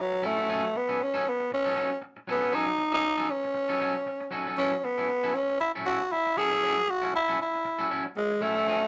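Driving and danceable, this short disco fragment with a light swing sets a raspy, growling tenor saxophone with light vibrato up front on the melody over a twangy, picked electric guitar at the edge of break-up, both sitting in a small, moderately reverberant room as the harmony moves from F#m6 to F#m7 at 4.6 seconds.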